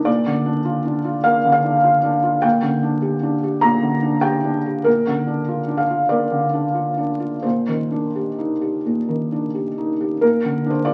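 Tender and hopeful, this short neoclassical minimalist cut from a longer piece features a solo felt-muted upright piano, soft, mellow and intimate with audible action noise, playing rubato in 4/4 around 84-103 BPM in Bb major through Gm/Bb and Cmadd9/Bb before returning to Bb at 10.2 seconds, set in a wet studio reverb and heard through the crackle and dulled top end of a very old 78 rpm record.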